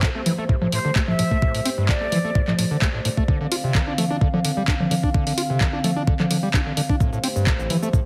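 Driving and hypnotic, this acid house excerpt runs at 129 BPM in A minor, cut from a longer piece, with a straight 4/4 pulse and chords moving from Am7 to Dm7 at 3.3 seconds and back to Am7 at 7.0 seconds. An up-front, thumpy electronic kick drum and a punchy analog drum machine with congas, handclaps, hi-hat and shaker carry the groove throughout, both tape-warm and re-recorded in a small room. An overdriven acid bass plays a squelchy, gritty riff with a resonant filter sweep and saturated square-wave bite, colored by subtle chorus and pumping with sidechain. Alongside it, a dark analog pad holds deep, nasal, detuned chords with a slow attack and long release, treated with chorus and the same sidechain pumping. Briefly, from 0.7 to 2.5 seconds, an airy jazz flute with expressive vibrato floats over the mix, trailed by dub echo, while the whole track sits in light digital reverb with a heavily compressed, radio-like sound.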